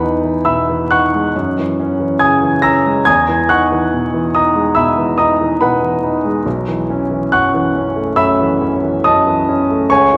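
Serene and luminous, this short passage of impressionist classical music is cut from a longer solo piano piece in E lydian. It moves at a slow 70 BPM in 4/4 with a rubato feel, and the harmony drifts from Emaj7 through F#9 and Emaj9 before settling on B11 at 6.5 seconds. A single concert grand piano plays throughout, ranging from deep bass up to bright upper notes, its tone intimate and polished with long sustain and the sound of its action audible up close. The instrument sits present and up front, yet a lush concert hall reverb surrounds it, giving the sense of a church or concert hall. A faint vinyl crackle adds a gentle, worn texture beneath the ringing chords.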